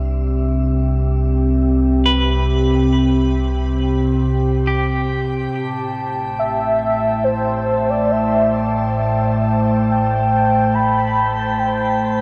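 Melancholic and serene, this ambient excerpt rests on a warbly, nostalgic tape-like pad holding dark, sustained chords up front and a deep, round sub bass that fades in over the second half, while a bright, clean electric guitar picks arpeggios with tremolo and tape echo from 2.1 to 5.9 seconds, overlapping briefly with a glassy, ethereal glass harmonica texture that enters at 5.5 seconds, and a velvety, detuned synth lead carries the melody with vibrato as the harmony moves from C to Am7, the whole piece sitting in a long, wet shimmer reverb.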